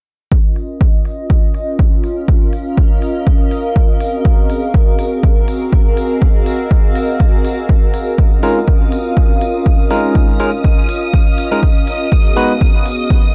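Deep house at 122 BPM in Db major with a 16th-note swing, this relaxed, sunny excerpt rests on a punchy, up-front kick and smooth, low-passed hi-hats, with a filter sweep running across the drums throughout. A hollow, flute-like pad carries sustained chords with chorus and sidechain pumping, joined at 1.6 seconds by a cloudy, evolving granular pad bathed in its own reverb. At 8.2 seconds a shimmering vintage string machine holds a high violin note, and at 8.4 seconds a barky, clean tine electric piano adds stabs through dub echo, all within a dark, digital ambience.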